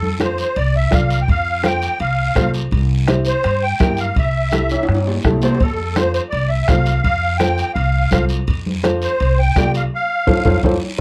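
A musette accordion, upright bass and congas open this joyful, danceable cumbia excerpt together, joined a moment later by a dark upright piano, bombo, guiro and timbales. At 167 BPM in a straight 4/4 feel, the music sits in F major and moves from F to C and back to F. The accordion carries the melody up front with a reedy, shimmering musette tuning and a vintage, band-limited tone, while the pizzicato upright bass also sits up front, growly and woody. The piano fills in the accompaniment with a mellow, worn, slightly detuned sound, boxy and short in sustain, with its action noise audible. Ringing congas stay in the background, the bombo thumps with a soft beater, the guiro adds a raspy scrape and the metal-shelled timbales ring from a distance. A drum fill arrives at 4.7 seconds, and a band accent follows at 9.9 seconds. The whole excerpt has a dry, close 1970s-style studio sound with light reverb.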